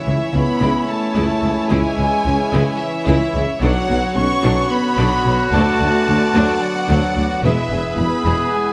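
A heroic, relentless cinematic passage opens at once with the full orchestra, the violin section carrying a lush, smooth-topped melody with soft attacks and expressive vibrato while a distant, crisp silver flute adds a second line in the same register from the background. Beneath them a second violin line, a focused viola accompaniment and a shimmering celeste organ stop fill out the middle, as a punchy French horn section and a roomy, very quiet trombone section hold sustained chords. A mellow, distant trumpet punctuates the texture with stabs, and from 0.1 seconds the bass is anchored by a close, very quiet cello section, an expressive double bass section and a warm solo tuba. The uneven seven-beat metre gives the straight, driving pulse a restless lean as the harmony moves from C#m through Bmadd9 and D to E. Everything sits in a moderate scoring-stage reverb, and the passage, cut from a longer piece, runs to about 8.7 seconds.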